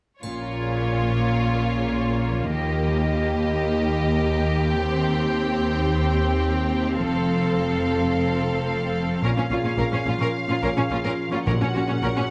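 Determined and adventurous, this heroic, cinematic film-score excerpt moves at 107 BPM in Bb dorian, building steadily as a lush, distant first violin section carries the melody over a clear, focused second violin line, background violas and mellow French horn chords. Harp arpeggios ring very quietly underneath, while smooth background cellos and woody double basses anchor the bass, both bowed with vibrato. A bright triangle sounds only at the opening, and hard-mallet timpani enter at 11.5 seconds over the closing Gb/Bb chord, with light reverb on closely miked, detailed sound.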